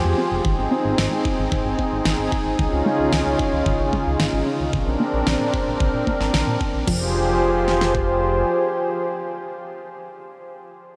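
Synthwave at 112 BPM in F minor, driving and cinematic, where a smooth, detuned analog pad with sampler grit and sidechain pumping sustains chords through Ab, Dbadd9, Bbadd9 and Fmadd9, while a soft, round pluck plays dark, tape-echoed arpeggios under a filter sweep until 7.1 seconds, a glossy, nasal chorused synth bass holds the low end, and a layered electronic pop kit with a knocking kick and fat snare arrives at 0.4 seconds, joined by a second kit layer of crash cymbal and snare at 1.0 seconds, all in a dreamy mix soaked in huge ambient reverb.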